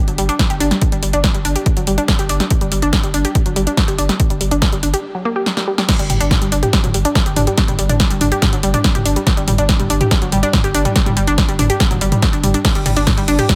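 Driving peak-time techno at 142 BPM in straight 4/4, intense in mood, cut from a longer piece tuned to A4 = 439 Hz around a G5 chord. An up-front, detuned sawtooth unison pluck with a noise layer and ring modulation carries the riff between F#3 and G4, pumping against the kick through tube saturation and digital delay, while a thick, overdriven sine sub bass holds G1 under a low-pass filter. A punchy analog-style kick enters at 0.4 seconds beside a layered, tape-warm kit of punchy snare, warm hats, crash, ride and toms, and after a short break and drum fill the drop lands at 5.9 seconds, all set in light digital ambience.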